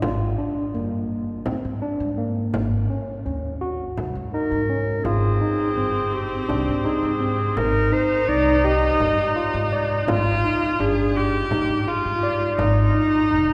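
A barky, overdriven tine electric piano spins gritty arpeggios through a combo amp over woody pizzicato upright bass and a small, bright frame drum in the background. A warm classical clarinet solo enters at 4.3 seconds, and a clear, smooth bowed viola with vibrato joins at 5.1 seconds, giving this playful, restless chamber excerpt in 7/8 at 167 BPM, in A-flat Lydian, a cavernous cathedral reverb.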